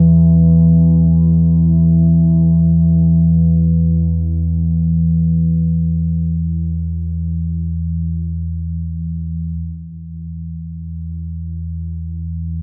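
A deep, rumbling drone opens this ambient excerpt on its own, unfolding in free time with an unsettling, ominous mood. Sitting up front between E2 and E3, it has a warbling, vintage character, its detuned triangle and sawtooth tones rising on a slow attack, sustaining, and fading on a long release. Its own built-in reverb and a diffuse ambient delay blur the sound into a dark haze. The drone plays solo for the full 12.6 seconds, with the music moving into a new section at 9.6 seconds. The whole piece sits in a wet, cathedral-like space with a 5.5-second reverb tail, and the production is dark and warm, giving the fragment a heavy, brooding weight.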